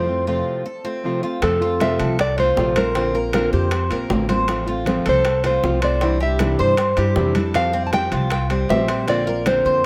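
Sunny and relaxed, this Cuban son and guajira excerpt opens with a brief break in which a fingerpicked classical nylon-string guitar carries the melody over flamenco guitar accompaniment, metallic double-strung Cuban tres arpeggios and a woody, thumpy pizzicato upright bass sitting up front. At 1.4 s the percussion enters: ringing, medium-tuned congas played with soft hands in the background, tight, high-tuned bongos kept very quiet, and ringing metal-shell timbales. Light reverb surrounds the ensemble as the chords move from F through Bbadd9, F/A and Cadd9 to Fsus2 before returning to Bbadd9.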